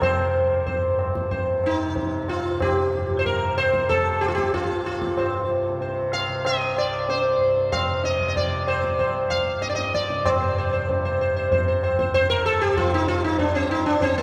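A long cathedral reverb fills this recording, made in a church or concert hall, giving every note a lingering halo. It is a short passage cut from a longer Hindustani classical performance in raga Bhimpalasi on C, with a longing, solemn mood, in 4/4 at around 94 BPM and gradually speeding up throughout. Up front, a bright, plectrum-plucked sitar carries the melody between Bb3 and F5, its buzzing tone ringing with sympathetic strings. Behind it, a mellow, softly plucked tanpura sustains a shimmering low drone from C2 to C3, while a high-tuned, ringing tabla sounds distant, as if heard across a large room. All three play from start to finish, and the music moves into a new section at 10.3 seconds before the passage ends at 14.2 seconds.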